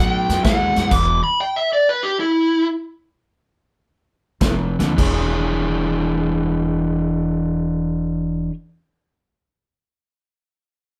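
Recorded as a band playing live in one room with moderate studio reverb, this laid-back, swaggering electric blues shuffle is swung in 4/4 and cut from a longer piece. Up front, a dark, overdriven lead guitar through a small cranked amp picks the melody, while a crunchy overdriven guitar plays the riff over woody pizzicato upright bass and a distant, roomy country drum kit with a punchy kick, snare, hi-hat and crash. The band stops and the tempo slows, leaving the lead guitar alone until 2.7 s, and the riff, bass and drums return at 4.4 s.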